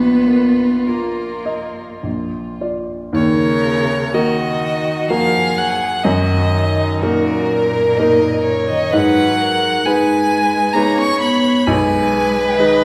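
Heard from further back in a wet recital hall, this excerpt from a slow romantic movement for piano quartet in 3/4 unfolds with elegiac, yearning rubato. Up front, a rich, smooth violin carries the vibrato-laden melody, while a second violin, warm and expressive with portamento, and a distant, even cello play second lines beneath it. A baby grand piano, also up front, with a natural tone and short sustain, supplies the accompaniment throughout as the harmony moves from Bbsus4 through Ebm toward Abm/Cb.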